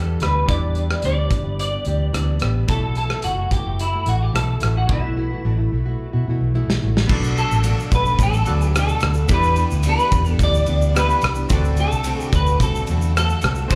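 This wistful, lonely stretch of indie bedroom pop, cut from a longer piece, opens with a twangy, picked clean electric guitar carrying the melody up front, coloured by ensemble chorus, slapback and tape echo. Beneath it, a round, foam-muted vintage fingered bass sits dark and punchy. A fingerpicked flamenco guitar adds accompaniment softened by lush chorus, warbly pitch drift and slapback, while glossy retro synth keys with pulse-width modulation and filter sweeps glimmer in the background. A loose acoustic drum kit enters at 0.2 seconds with punchy kick, medium-tuned snare, rim click, hi-hat, shaker, ride and crash in a small, pumping room, then plays a fill from 4.9 to 7.1 seconds leading into the second section. The harmony moves from Em7 to B7sus4, then through Bm7, Em7 and D7, and the recording sounds like a live club gig heard through the venue's PA, wrapped in club reverb.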